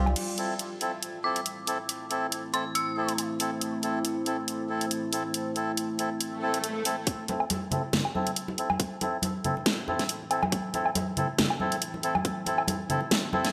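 Steeped in a wet, cavernous echo-chamber reverb, this meditative deep dubstep excerpt in half-time sets a reedy, nasal melodica's gritty, echoing stabs over a moody sawtooth pad and an up-front electronic kit with a huge snare, crash, hi-hat and woodblock, with an eerie, inharmonic FM bell flickering briefly near 1.2 seconds, ringing congas, an electronic swell at 6.3 seconds, and a tight, overdriven kick arriving at 7.1 seconds as a filter sweep on the melodica drives the build-up.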